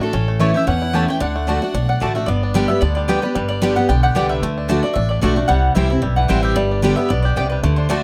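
A fast, joyful bluegrass passage at 224 BPM opens with twangy, fingerpicked banjo and a bright, woody mandolin sharing the melody over a full-bodied, up-front dreadnought guitar, while a clear, nasal fiddle with light vibrato adds a second line until 2.1 seconds, a thumpy pizzicato upright bass enters almost at once, and a second picked mandolin joins with stabs at 0.4 seconds, the swung, virtuosic playing heard through close, detailed microphones and light reverb as the harmony moves from A and D into G, D and C.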